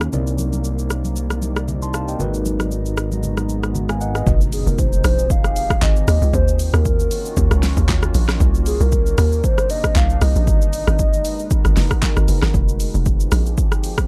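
A late-night amapiano excerpt in F dorian at 116 BPM opens with a mellow tine electric piano, a fat sawtooth analog bass, background congas and a moody, chorused ambient pad over a punchy, up-front deep house kit of handclaps, hi-hat, kick, rim click, shaker and snare, then at 4.3 seconds drops into a bouncy, hollow log drum bass with a very quiet electronic impact, while a woody, clarinet-like synth lead with vibrato, chorus and analog delay carries the melody over minor ninth chords in a dark, dry mix.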